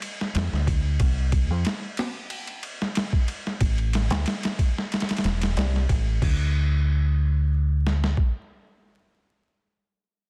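A straight 4/4 groove at 92 BPM anchors this dark, melancholic trip hop fragment, tuned to A4 = 435 Hz and cut from a longer piece. The boom bap sampler-style drum kit sits up front, pitched down, compressed and gritty, with a thumpy kick, a high-tuned snare, ride and crash cymbals, all pushed through overdrive and a studio reverb. From 0.4 seconds a deep dub fingered electric bass joins, round and shadowy in tone, recorded direct and amped and placed prominently in the mix as it moves between E1 and F2. A digital ambience, a dense, heavily limited modern master and a layer of vinyl crackle shape the track's overall sound. A new section arrives at 6.2 seconds, and the drums carry on until 8.3 seconds.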